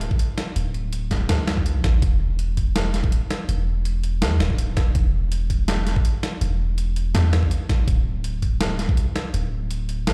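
A long, sustained 808-style bass and a boom bap sampler-style drum kit open this dark, spacious piece of half-time drum and bass, cut from a longer track, with an electronic kick joining at 0.1 seconds. The tempo sits at 164 BPM in 4/4 with a half-time feel and a light 54% swing on the sixteenths, tuned to A4 = 441 Hz. The bass sits up front, deep and mellow with a sine-like tone, a fast attack and a long decay, ranging from D1 to E2 and thickened by tube saturation. The sampler-style kit supplies hi-hat and a medium-tuned snare with a gritty, compressed character, re-recorded in a large room, while the knocking, produced electronic kick drops out at 9.0 seconds. The whole passage stays in drop mode, repeating its main section from 2.0 seconds, and sounds as if played back through a big sound system in a bare room.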